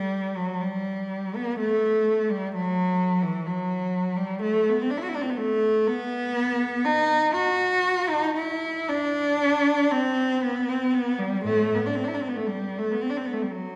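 A wet recital-hall reverb, with a decay of about 1.7 seconds, surrounds this recording from what sounds like a church or concert hall. Within that space a single bowed cello sits up front, its tone rich and focused with vibrato. This is an expressive classical piece for unaccompanied cello, lonely and meditative in mood, moving freely in 3/4 at roughly 52-65 BPM with a rubato feel. The cello plays alone for the whole 13.8 seconds, ranging from A2 up to F#4, tuned to A4 = 436 Hz. The passage is a fragment cut from a longer work, holding to a single unbroken section.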